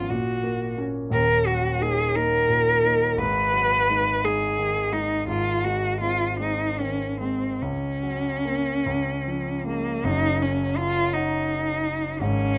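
A clear, focused bowed cello sings a serene, lyrical romantic melody with vibrato over the deep-bassed, polished accompaniment of a warm concert grand piano, both up front and closely, intimately captured in light reverb, flowing in a rubato 6/8 through a brief passage cut from a longer classical duo that settles onto its home chord at 10.1 seconds.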